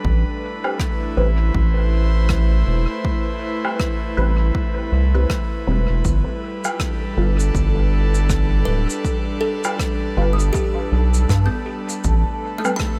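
This spacious, meditative ambient dub in A minor opens at 80 BPM with a breathy, chorused pad holding Am9 and G chords over a round, deep analog bass and a punchy, overdriven electronic kick, soon joined by a muted, phased dub chord stab in the background and a small-room woodblock, rim click and shaker, both carried on dub echo. A bubbling, resonant stepped-filter texture with chorus and built-in reverb slips in behind the mix at 6.1 s, and a woody, hollow kalimba adds echoing arpeggios from 8.7 s. Swung 16ths give the groove an easy sway, while the bass sits up front.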